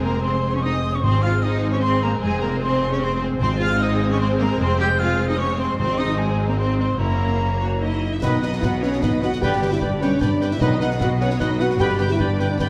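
A dark French horn section enters with sustained chords at 7.6 s, crowning this adventurous, triumphant heroic film-score cue in 3/4 at 151 BPM in Ab major, cut from a longer piece. From the start, a lush background violin section carries the melody over a smooth second violin line, a pure silver flute line above, distant violas, very quiet thumb-plucked harp arpeggios, and clear cellos and focused double basses on the bass, joined at 1.0 s by very quiet timpani struck with hard mallets. At 8.2 s the chords shift toward B and G as a mellow trumpet section adds roomy stabs, a vintage-toned trombone section sustains chords very quietly, a punchy cor anglais and a very quiet clarinet add second lines, and concert snare, bass drum and bright clash cymbals join, all within a moderate scoring-stage reverb.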